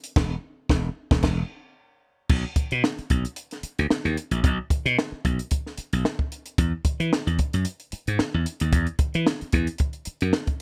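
A compact cocktail drum kit with a dark, rolled-off top, a high-tuned snare, crash, hi-hat and a punchy kick opens this strutting funk excerpt at 112 BPM with a light 16th-note swing, joined at 0.2 seconds by a bright, growly slap bass spanning E1 to E3 for a band accent that runs until the groove shifts into a new section at 2.3 seconds, both parts sitting up front in a dry, close sound.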